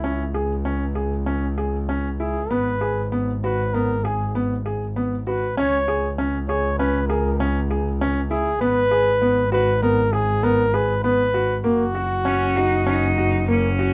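This contemporary chamber piece in an uneven 5/4 meter moves at 98 BPM with a straight feel in C# dorian, and its mood is pensive yet urgent. A warm, punchy flugelhorn carries the melody up front in a classical solo style. A felt-muted upright piano plays soft, intimate arpeggios, and a rich bowed double bass anchors the low end with expressive vibrato and portamento. At 12.3 seconds a bright, biting cello enters with a second line and light vibrato, adding intensity in the closing moments. Light reverb surrounds this cut from a longer piece, which runs 13.9 seconds over harmony centred on C#5, G#m and F#.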